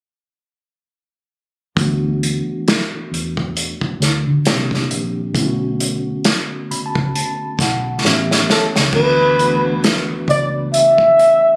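A worn, slightly out-of-tune tine electric piano, lightly overdriven and run through a filter sweep, opens this slow, smooth neo-soul excerpt at 67 BPM in D major alongside a round, foam-muted fingered bass and an up-front acoustic kit with dark cymbals, punchy kick and bundle sticks, all sitting in a gentle 16th-note swing over chords moving from D69 through Cm9, Bm9 and A7. The piano adds a fill from 6.2 seconds and the drums fill at 8.0 seconds before the chords return to D69. At 8.5 seconds a breathy, close-miked flugelhorn takes the solo melody, dark and intimate with vibrato, scooped notes and plate reverb, all captured with a phone-in-the-room studio ambience and light reverb.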